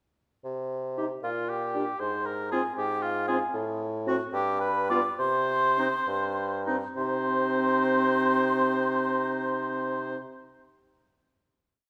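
Restless and dramatic, this quick classical-period movement for wind quintet in C minor moves in a rubato 6/8 at 66-80 BPM, with a warm bassoon bass entering at 0.4 s, a hollow, pure flute with vibrato carrying the melody doubled at the octave by an up-front oboe, a distant clarinet and a clear French horn adding short accented and sustained chords, and a slowing from 2.8 s that leads to a final C minor chord at 7.0 s, set in a wet scoring-stage reverb.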